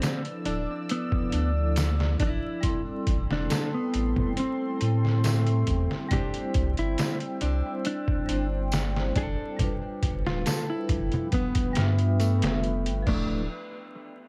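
A deep, round sine sub bass, sitting up front with tube saturation, enters at 0.5 s and anchors this brooding, smoky trip hop excerpt in D dorian at 69 BPM in a straight 4/4. Beside it, a compressed, pitched-down sampler-style drum kit with a thumpy kick, medium-tuned snare, hi-hat and crash is muffled, overdriven and placed up front, while close, ringing tambourine and congas add acoustic percussion until 12.4 s. A dark, clean, fingered electric guitar carries the melody through tape echo, and a fingerpicked nylon-string guitar with fresh strings plays classical-style arpeggios in the background, also with tape echo. A metallic vibraphone struck with soft mallets supplies mellow, mid-forward accompaniment with slow motor vibrato and tremolo, and a moody, detuned sawtooth pad with a sub octave, wave folding and ring modulation holds slow-attack chords bathed in chorus and its own reverb. 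Vinyl crackle hangs over the whole texture as the harmony moves through Dmadd9, Am7, C and G7 before returning to Dmadd9 at 13.1 s.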